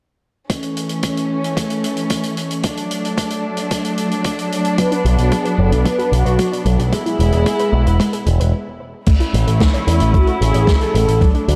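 Playful and romantic, this italo disco passage moves at 112 BPM in a straight 4/4, cut from a longer piece in A major and cycling through A, D, Bm and E. A close, intimate chamber string section holds sustained bowed chords up front with light vibrato and a sul tasto tone, over a thumpy, sampler-style electronic kick re-recorded in a small room and a natural-sounding swinging big-band kit of crash, hi-hat and medium-tuned snare captured in a big room. At 4.8 seconds a round, brassy synth brass melody with a filter sweep arrives alongside a lo-fi, warbling sawtooth pluck that spins arpeggios in the background, both coloured by chorus and tape echo. The picked electric bass joins at 5.1 seconds, bright and up front with its envelope filter. After a brief stop at 8.5 seconds the music resumes on a new section, all of it bathed in a lush hall reverb within a dark, warm production.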